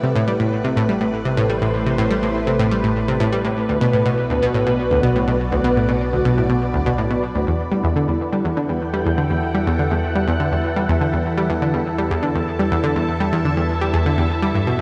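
An echo-heavy mix with moderate plate reverb frames this cosmic, hypnotic stretch of sequencer-driven ambient space music in E minor at 123 BPM, where a round, bright analog pluck riff with delay sits up front beside lush, vintage string-machine chords thickened by ensemble chorus, a mellow, evolving analog drone bass enters at 0.6 seconds, and a resonant, bubbling stepped-filter texture fades in from the background across the Am7, Bm7 and Em7 changes.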